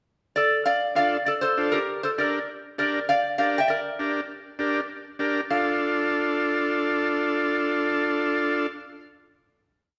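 A straight 4/4 Latin groove at 198 BPM drives this short, passionate piece in D minor, where a metallic, nasal resonator slide guitar played with fingerpicks carries up-front call-phrase motifs, partly doubled in thirds, from 0.4 s over a buzzy vintage combo organ with light vibrato striking rhythmic triad chords through Dm and Gm, the two set in a wet stone-room reverb like a band playing live together before settling on a final Dm chord at 5.5 s.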